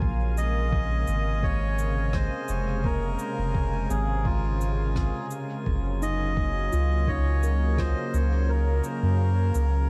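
A round, up-front dub sub bass anchors this deep, spacious ambient dub excerpt, joined by a muffled, thumpy, pitched-down electronic kick that drops out at 7.9 s, while cabasa and rim click with dub echo sit softly in the background. A smooth, detuned sawtooth pad with chorus sustains chords that move from Bbm9 to Gbmaj7 at 5.7 s, under ringing handpan arpeggios and a reedy, breathy melodica melody, both carried on tape echo. A glassy harmonics texture with chorus and reverb drifts far behind, and small-room ambience with vinyl crackle gives the sound an aged patina.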